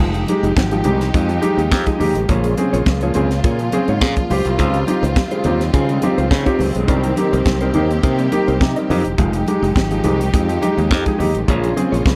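Disco groove in F minor at 104 BPM in a straight 4/4, danceable and driving, cut from a longer piece. A tight funk drum kit sits up front with a dry, high-tuned snare, tight kick and hi-hat, alongside a growly, bright fingered electric bass that carries the low end from E1 to Db3. A warm concert grand piano fills the middle with audible action noise and deep bass. A lush bowed string section holds sustained chords with vibrato and a smooth top. Further back, a dark, clean electric guitar adds compressed fingered accompaniment through spring reverb, while very quiet congas with thin skins enter at 0.3 seconds, sounding distant as if in a large room. The harmony moves through Fm9, Bbm7, Dbmaj9#11 and Cm7 before returning to Fm9 and Bbm7, all set in light reverb and studio ambience.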